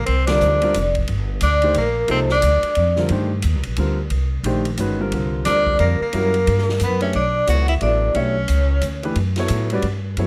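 Modal jazz in a swinging 3/4 at 178 BPM, spiritual and hypnotic, where ringing vibraphone carries the melody over an edgy, forceful tenor saxophone second line with scooped notes, the saxophone dropping out at 2.9 seconds and the vibraphone at 3.0, both returning at 5.5 seconds, while a growly, up-front pizzicato upright bass, a distant, roomy big-band drum kit with a boomy kick, and a deep-bassed concert grand piano drive the music from C dorian to B minor at 7.1 seconds in a dry sound.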